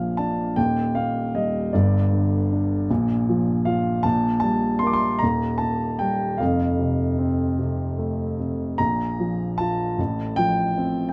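In a rubato 6/8 lilt, this reflective, melancholic 11.1-second fragment of a longer classical piece features a lyrical solo baby grand piano, dark and mellow with long sustain, spanning a broad range from deep bass to high treble, captured up front by close, detailed microphones with a touch of light reverb.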